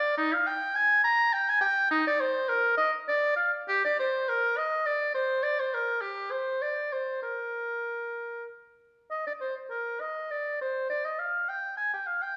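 Classical, baroque-style fantasia for unaccompanied oboe, cut from a longer piece and moving at 102 BPM in a flowing, dance-like 3/4 with a rubato feel, set in Bb major before turning to Eb major at 9.1 s. The solo oboe is warm and up front yet distant, ranging from Eb4 to Bb5 across the full 12.4 seconds. A roomy recital-hall reverb with a 1.4-second decay places the listener further back in the space.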